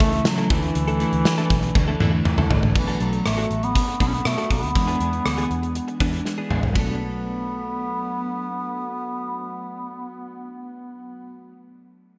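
This nostalgic, moody 1980s-style pop excerpt in B minor at 120 BPM opens with everything at once: a bass clarinet carries the melody up front, its vibrato and scooped notes giving it a smooth, jazz-styled solo voice. Beneath it, a gated drum kit sits punchy and bright in a stone-room sound, with crash, ride, hi-hat, tambourine, rim clicks, a medium-tuned snare and toms, and it plays fills at 1.8 and 6.3 seconds before dropping out at 6.9 seconds. A foam-muted picked electric bass supplies a dark, round low end, while a direct-recorded clean electric guitar plays a compressed riff colored by analog chorus and digital delay. Glassy, detuned digital keys with a filter sweep hover airily in the background, and a double-tracked overdriven guitar adds a very quiet crunch only until 3.3 seconds. The chords move from A through Dsus2 to Bm7 and E7, all bathed in a lush hall reverb within a bright digital production.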